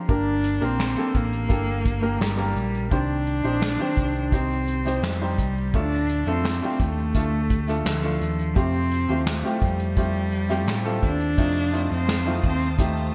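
A bowed cello and an upright piano open this short cut from a longer piece at 0.0 seconds. It is an earnest, driving piano-led pop track in G minor at 85 BPM in a straight 4/4. The solo cello carries the melody up front with vibrato and a focused, smooth top. The woody, boxy piano gives clear accompaniment with short sustain and a subtle chorus. From 0.1 seconds a dark, round, amped electric bass and an acoustic drum kit join in. The kit is played with bundle sticks and sits up front, with a punchy kick, a medium-tuned snare, hi-hat, handclaps and crash cymbal, all wrapped in gated reverb. The harmony moves through Gm, Cm, Dm and Fadd9, and at 11.4 seconds a warm studio string section enters in the background with sustained chords. Light reverb and a small-room ambience frame the bright, 1980s-style digital production.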